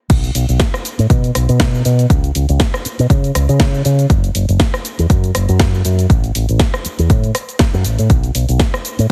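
The recording has a dry, heavily compressed radio sound, with little reverb and the low end pushed up front. This short nu-disco excerpt sits in a sensual, groovy drop from start to finish, with a light swing on the sixteenths in 4/4. A fingered electric bass runs through an envelope filter, sounding warm and direct, and ducks with sidechain pumping from 0.1 to 9.1 seconds. A punchy, layered electronic kick sits up front and carries the pulse until 8.7 seconds. Beneath it, a tape-tinged house kit re-recorded in a large room sits lower in the mix, adding a cracking snare, hi-hat, rim click, cabasa and crash cymbal.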